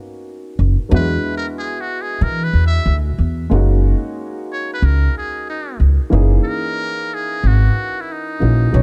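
An up-front upright bass, plucked and woody on steel strings, anchors this jazz-hop excerpt, entering at 0.6 seconds and holding the low end from F#1 to E3. Set at 92 BPM in 4/4 with a swung sixteenth-note feel, the hip hop groove carries a mood that is both warm and cool in F# major. A worn, slightly detuned upright piano opens the passage on its own, comping quietly underneath. From 1.0 seconds a trumpet with a metal mute takes the solo melody, its buzzy, thin tone brilliant yet smooth on top, colored by light vibrato in a jazz style. The harmony moves from Bmaj7 to E9, then settles on F#69 and F#13 across two repeated sections, while a small room reverb and a dark production lend the whole a close, intimate sound.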